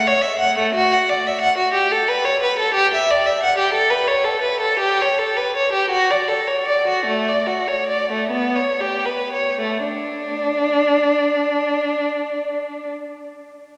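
Dance-like and radiant, this cut from a longer baroque-style classical suite movement gives a single bowed violin the stage in D major and 6/8, taken with free rubato at roughly 37-62 BPM counted in dotted quarters. The solo violin sits up front with a rich, focused tone and vibrato, ranging from A3 to F#5 and easing the pace from 3.7 to 9.9 seconds before a new section begins, then falling silent at 12.9 seconds. A wet cathedral reverb with a 4.9-second decay surrounds the playing with a long, glowing halo.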